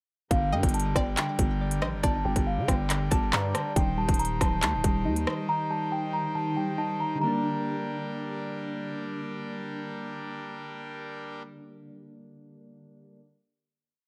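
A menacing, tense drill track in G minor at 139 BPM with a half-time feel opens at 0.3 s with a looping, bell-like celesta melody, round electric-piano-like synth keys in a patterned eighth-note arpeggio, a brassy trumpet-stop pipe organ pad, a growling 808-style bass with pitch slides, and an up-front, overdriven drill kit of hard-clipped kicks, crisp skipping hats with fast rolls, handclaps and rim clicks. A twangy string-like resonator pluck adds a sparse counter-melody in the background. The harmony moves from Gm to Eb6 at 3.8 s. The drums and bass drop out around 5.4 s, and the keys, celesta and organ carry the rest of the hook on Eb6 before settling onto a final Gm chord at 7.2 s under light reverb.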